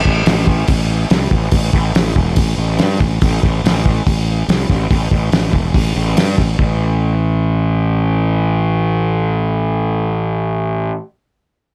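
A fuzz-laden fingered electric bass anchors this short classic rock excerpt, its growly, overdriven tone sitting up front as it plays from the start through to 10.9 seconds in a low register. Beside it, a cloth-damped drum kit of hi-hat, kick and snare brings a thuddy, muffled character, with a fat snare, a tight kick and a rolled-off top that gives it a gritty, lo-fi feel from a small room. The mood is driving and swaggering, set in a straight four-four feel. The drums drop out at 6.7 seconds, just as the music moves into a second section at 6.6 seconds, leaving the bright, amped bass to carry on alone. A light reverb surrounds the whole, and the piece is cut from a longer performance.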